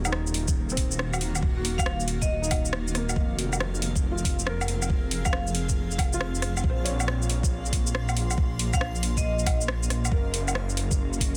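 A swung future garage groove of metallic hi-hats, rim clicks, shaker and woodblock sits up front, joined at 0.5 seconds by a knocking, overdriven electronic kick, both carrying studio reverb in this wistful, ghostly piece. Beneath them, a menacing, saturated detuned saw bass with a filter swell and a blurred, cloudy granular pad pump with the sidechain, while a soft, felt-muted upright piano with tape echo plays an intimate accompaniment. A bright, ringing vibraphone with tape echo slips in from the background in brief phrases, first at 1.8 seconds, all within a dense, heavily limited master.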